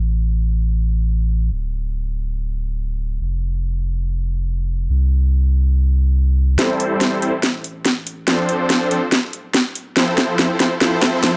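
A saturated sub bass opens this dreamy, lush future bass excerpt alone, its deep sine tone thick and up front, moving between D1 and C2 beneath a filter sweep that runs until 6.6 seconds. At 6.6 seconds a build-up begins as supersaw chords enter with a huge, airy sawtooth sound, detuned in unison with a noise layer, bright and sustained with a fast attack, shaped by a low-pass filter and delay and swept by their own filter. A trap drum kit arrives at the same moment with a drum fill, its sharp snare and metallic hi-hats electronic and forward in the mix. The harmony moves from Am7 to Dm7 to Fmaj7 in A minor at 142 BPM, felt in half-time with a light swing on the sixteenths. Light reverb and a low-pass filter soften the whole, and the passage is cut from a longer piece, ending at 11.4 seconds.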